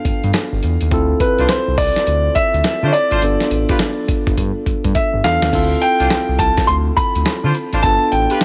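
Punchy and confident, this short cut from a longer new jack swing R&B track rides a swung sixteenth-note groove in 4/4. A polished grand piano carries the melody up front with long sustain and a touch of delay, while a clean tine electric piano, heard through its built-in speakers, fills in the accompaniment beneath it. A smooth, saturated synth bass mixes sawtooth and triangle tones, gliding between notes with portamento and vibrato and a mellow, moving notch in its sound. The dusty, sampler-style drum kit sits up front, compressed and gritty, with a thumpy kick, a medium-tuned snare, hi-hat and crash, and a fill from 4.4 to 5.5 seconds leads into the second section. From 1.4 seconds a tight, vintage horn section adds jazz-style stabs with light vibrato, and the whole piece sits in a digital ambience over chords moving between G7 and Dm7.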